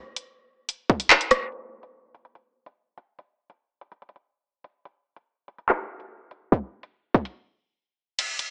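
An up-front electronic drill drum kit of hard-clipped kick, bright hi-hats, handclaps, rim clicks and crash cymbal, roughened by 12-bit sampler grit, sets a dark, tense half-time hip hop groove in this fragment of a longer piece, heard through cassette-tape, low-passed, small-speaker character and light digital reverb, with a filter sweep beginning at 1.5 seconds, a break at 7.4 seconds and the kick muted from 8.2 seconds.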